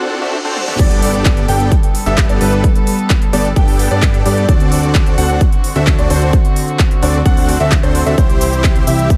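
A straight 4/4 pulse at 130 BPM drives this triumphant, anthemic stretch of festival progressive house in G major, cut from a longer piece. It opens on a brief break over a D7 chord, where a riser and reverse cymbal build in the background and a huge, euphoric supersaw lead already states its riff. A drum fill at 0.6 seconds tips into the drop at 0.8 seconds, marked by an impact, as a punchy, up-front electronic kick lands with a fat, detuned analog bass, the loudest melodic part. The big-room kit adds crisp hats, handclaps, shaker, toms and crash with a tape-warm, roomy character. Beneath the bright, compressed lead, a clear grand piano plays arpeggios with long sustain and digital delay, and a dark, reedy chamber string section holds bowed chords in the background, with lead, bass, piano and strings all pumping with sidechain compression. The harmony moves from Gadd9 to D7 and reaches C near the end, in a dry mix.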